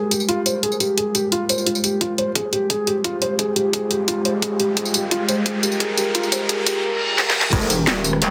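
Heavily compressed and radio-thin, with a moderate digital room reverb, this dark, futuristic technical drum and bass excerpt at 174 BPM in F minor opens on a deep, detuned ambient pad holding an Fmadd9 chord with chorus and sidechain pumping, while a soft, felt-muted upright piano plays mellow arpeggios through dub echo, both under filter sweeps. An up-front drum and bass kit with a cracking snare, bright hats, rim clicks, tambourine and crash drives a build-up from 2.0 seconds, backed by a knocking electronic kick in the background, drum fills, a riser and a reverse cymbal. At 7.5 seconds an impact lands as an aggressive, saturated metallic wobble bass surges forward with overdrive and chorus, joined by a very quiet, dusky breakbeat kit with a high-tuned snare.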